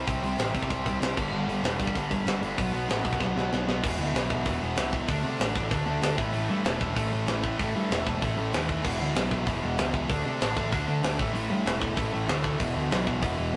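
A rough rehearsal-room recording with light reverb and lossy compression artefacts captures this aggressive, raw punk rock cut at 192 BPM in E minor, where a sludgy, double-tracked overdriven guitar riff and a growly, punchy fuzz bass sit up front alongside an equally forward tight metal drum kit with bright cymbals and a high-tuned snare, and a drum fill at 3.2 seconds leads into changes cycling through E5, D5 and A5.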